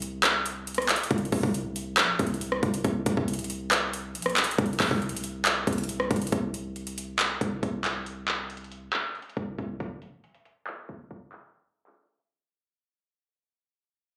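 Trap hip hop at 138 BPM in a half-time feel, this melancholic, hard-hitting piece, cut from a longer track, pairs an up-front, overdriven electronic kit of hard-clipped kick, metallic hi-hats, handclaps and rim clicks with a deep, boomy, sine-based 808-style bass that carries a noise layer, a fast attack and a mellow decay. The bass drops out at 9.8 s, while the drums carry on through a fade-out that begins at 6.3 s and into a break at 12.4 s. Captured on a phone in the room, the sound is muffled by a low-pass filter and surrounded by light club reverb.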